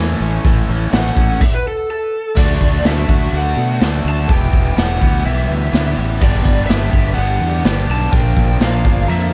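Indie rock at 125 BPM in D major, jangly and carefree, with a bright, double-tracked distorted guitar riff and a punchy fuzz bass up front, a gritty, saturated garage drum kit, a lo-fi overdriven lead guitar with digital delay carrying the melody from 0.9 seconds through a stop at 1.4 seconds, a very quiet, swirling phased string machine holding vintage sustained chords that move from A through D, Em and G to Bb, and a mellow rubber-mallet glockenspiel ringing in at 9.1 seconds, set in a dark, warm small-room sound.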